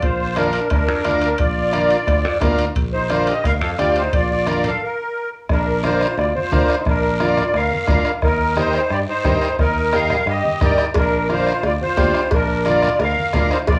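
A reedy, shimmering musette accordion leads this joyful, danceable cumbia excerpt at 176 BPM in Bb major, up front over a cassette-tinged home-recorded sound, with a bright, punchy trumpet second line in the background, a growly fingered electric bass, a buzzy overdriven combo organ entering at 0.4 seconds, and soft bombo, low-tuned congas and raspy guiro, while ringing timbales and cowbell drop out at the brief stop at 4.8 seconds and return at 10.9 seconds as the chords move from Bb to Eb and back.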